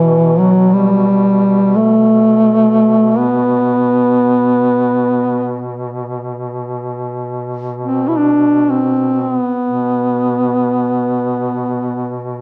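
From the first moment, a dark duduk sings a mournful melody over a second duduk holding a low drone on B2, in the solemn manner of a Caucasian folk lament. The piece moves in free time in B Phrygian, and this brief section is cut from a longer work. The lead duduk sits up front, ranging from E3 to E4 with a soft attack, a smooth top, vibrato and scooped notes in a folk style. The drone duduk is warm, distant and roomy, and it also carries vibrato and scooped notes well beneath the melody. A moderate recital-hall reverb surrounds the pair, giving the sound a hushed, sombre depth. The melody ends at 12.2 seconds, and the drone carries on until 12.4 seconds.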